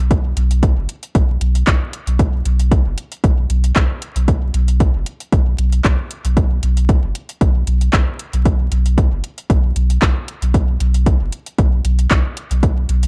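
A pure sine sub bass sits up front, deep, clean and smooth with a fast attack and sustained dark tone, pumping under sidechain as it moves between F#1 and B1. An overdriven electronic kick, also up front, joins at 0.1 s alongside a deep house kit of handclaps and metallic hi-hats, both re-recorded in a large room, driving a hazy dub techno groove at 115 BPM with a light 16th-note swing. The echo-heavy mix carries vinyl crackle and little reverb, and this short cut from a longer piece stays in one deep section throughout.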